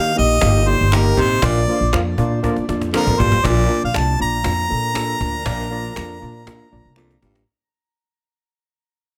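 A lightly reverberant sound opens this short, joyful cut of uptempo 1960s-style soul at 119 BPM in Bb major, where a clear, pop-style harmonica carries the melody up front with light vibrato, plate reverb and tape echo over a worn, slightly out-of-tune tine electric piano with gentle overdrive and a growly, thumpy pizzicato upright bass. A woody cajon enters at 0.2 s with faint snares, joined in the background by a mellow, jazz-style horn section doubled in octaves and by human finger snaps, while a raspy, gritty baritone saxophone punches in with a close-miked riff at 1.2 s. The harmony moves from Eb to Bb, drum fills mark 2.4 s and the close, and the uplifting groove fades out from 3.4 s.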